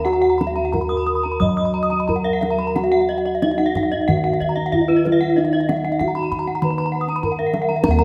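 In a straight 4/4 at 89-100 BPM, this shimmering, brilliant Balinese gamelan fragment in Eb pelog sets a mellow, padded-mallet bronze metallophone melody over a round, up-front bass line on bossed gongs, while two paired-tuned metallophones, one airy under a horn mallet and one struck with a wooden mallet, ring out arpeggios with beating shimmer, and a deep, close kendang played with soft hands joins at 0.4 seconds, all carried by a recital hall reverb.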